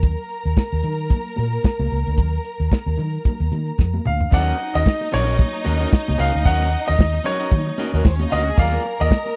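Disco with a sultry, danceable swing, cut from a longer piece and recorded dry and close in a 1970s studio style. A dark, smooth soul drum kit with a tight kick and a round, foam-muted fingered electric bass sit up front, with close, lush bowed strings alongside them and bright, high-tuned congas in the background. A drum fill at 3.8 seconds leads into a clear concert grand piano melody from 4.1 seconds, joined by a twangy, slightly broken-up electric guitar with spring reverb in accompaniment as the chords move from Ebm7 to Bb7.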